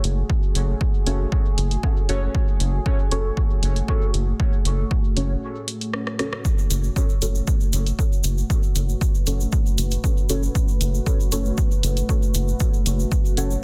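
A deep, moody pad sustains F# minor chords from the first moment, its slow attack, chorus and built-in reverb blending with a round, dark analog bass, tube-saturated and up front, that holds a low F#, while a punchy analog drum machine ticks out hi-hat and rim click. This hazy slice of dub techno moves at a steady 117 BPM in straight 4/4, an electronic kick driving it up front, with pad, bass and stabs all breathing to sidechain pumping. At 1.1 seconds a soft, mellow chord stab arrives, detuned and decaying, coloured by chorus, phaser, cassette-tape grit and dub echo. A break opens at 5.4 seconds and closes with a short drum fill, after which a grainy, bright egg shaker joins at 6.4 seconds and stays to the end. The dry, dense mix is heavily limited, and the piece is cut from a longer work, staying on a single F# minor chord throughout.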